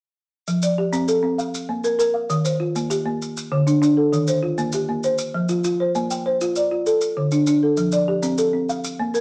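Set in a wet studio reverb, this brief excerpt of southern African traditional music in 12/8 at 132 BPM and F mixolydian puts a woody, rustic folk marimba up front, moving through hypnotic, rippling arpeggios in an mbira-style interlocking cycle from 0.5 to 9.2 seconds, with grainy, close maracas sitting much softer behind it.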